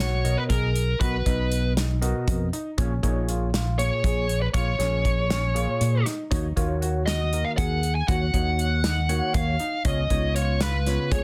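An up-front, dark and distorted lead guitar carries the melody through this brooding, intricate progressive instrumental, a short excerpt in 7/8 at 238 BPM counted in eighths, set in Eb minor with a straight feel. Beneath it, a round, punchy fingered electric bass sits forward in the mix, while a clear, worn baby grand piano plays open arpeggios with long sustain. From 0.2 seconds an overdriven tine electric piano adds barky, gritty accompaniment through a combo amp with analog chorus, alongside a natural country drum kit of hi-hat, kick and snare, with a tight kick and medium-tuned snare heard in a small room. The harmony moves from Bmaj7 to Bbm7, then Ebm7 at 6.3 seconds and Db7 near the end. Light reverb surrounds a dense, heavily limited modern master.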